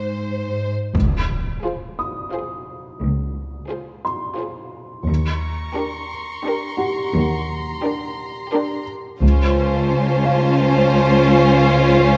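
Ominous and mysterious, this cinematic excerpt moves at 87 BPM in 3/4, with a rich, bowed violin section carrying the melody over an up-front, focused cello section and a felt-muted upright piano whose boxy, intimate tone comes with audible action noise. A huge, dark impact lands at 0.9 seconds alongside the entry of a double bass section, and soon after a second violin line with expressive portamento and a smooth, even viola accompaniment join in. At 5.1 seconds a high violin texture with soft attack settles in, and the whole ensemble sits in a moderate concert hall reverb over chords moving through C#maj7 and Ebmaj7.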